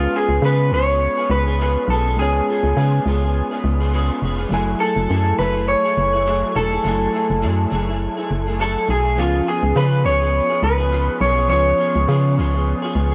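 An organ-like FM bass sits up front in this short indie pop excerpt, its hollow, dark tone striking with a fast attack and then decaying beneath a lonely, wistful mood. Over it, an electric guitar through a small old amp carries the melody from 0.0 to 12.3 seconds, its slightly broken-up, compressed picking colored by analog chorus and tape echo. A second amped guitar, darker and also up front, plays accompaniment with an ensemble chorus and a warbly pitch drift that gives it a lo-fi unsteadiness. A tine electric piano adds clean accompaniment that sounds as if heard through built-in speakers. At 103 BPM in 4/4 with a light swing on the sixteenths, the harmony moves from C#7 to F#m9 at 4.5 seconds and back to C#7 at 9.2 seconds. Light reverb and digital ambience give the whole a soft sense of space, and the tuning sits at A4 = 441 Hz.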